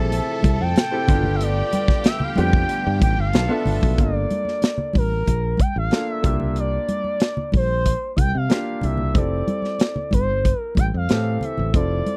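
An expressive portamento lead carries the melody through this cut from a longer piece of lush 1970s-style soul, its smooth sawtooth-and-triangle tone softened by vibrato and chorus. The mood is cinematic and bittersweet at 93 BPM in a straight 4/4, with the harmony moving from Fmaj7 and G9 through a rootless Gm9 and C7sus4 back to Fmaj7. Underneath, a punchy acoustic drum kit with a medium-tuned snare sits up front beside a growly fingered electric bass, while bright, close congas and a concert grand piano with deep lows and short sustain fill in the accompaniment. For the opening 4.0 seconds, a bowed studio string section adds a second line with light vibrato, and a vintage string machine with sub octave, phaser and ensemble chorus holds soft sustained chords in the background until 3.9 seconds. The recording is dry and close, with the intimate sound of a 1970s-style studio.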